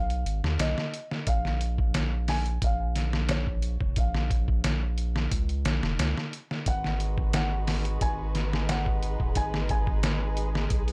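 Trip hop with a smoky, cinematic mood, moving at 89 BPM in a straight 4/4 in G# dorian, this short excerpt is cut from a longer piece. A felt-muted upright piano carries the melody, its soft, intimate tone revealing audible action noise and short sustain, with tape echo trailing its notes. Beneath it, a round analog bass sits up front with a deep, dark, sustained presence, while a sampler-style drum kit, compressed and pitched down, delivers a thumpy kick, medium-tuned snare and hi-hat dressed in studio reverb. At 6.7 seconds a muted violin section enters with veiled, con sordino sustained chords and gentle vibrato as the harmony shifts from G#m and A#5 to G#m7. At 7.0 seconds a flickering, granular texture joins in the background, detuned and slow to bloom, with its own reverb. The overall recording is dry and gritty, with a hardware character.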